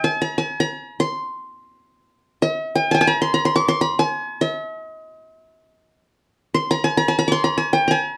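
A worn, warbling cassette sound with drifting pitch colors this short Arabic maqam fragment, set in a moderate studio reverb. A lone acoustic qanun sits up front for the full 8.2 seconds, its fingerpicked triple strings giving a warm yet bright-edged tone. The mood is passionate and festive, a brief glimpse cut from a longer piece.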